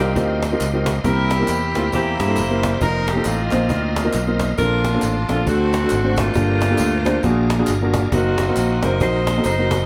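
Captured in a moderate studio room with the band playing live together, this hopeful, soulful uptempo gospel excerpt in a swung 4/4 sets an up-front, edgy saxophone section with vibrato carrying the melody over mellow concert grand piano accompaniment with deep bass, a bright tonewheel organ with key click, overdrive, chorus vibrato and slow rotary speaker holding sustained chords in the background, and round fingered electric bass, with a woody cajon with faint snares and saturated tambourine with group handclaps both joining at 0.2 s.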